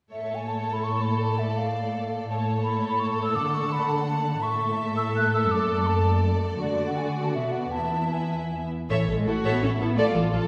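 A mellow, hollow concert flute, close and pure with vibrato, spins a second line above a cheerful, graceful romantic orchestral passage in A major, moving at a fast 165 BPM in 3/4 with a rubato feel. Clear, intense violins carry the melody while a second, focused violin section and smooth, even violas fill the middle, all sounding distant. Woody, dark cellos anchor the bass until expressive double basses join them at 8.9 s, all set in the wet reverb of a scoring stage heard from further back in the hall.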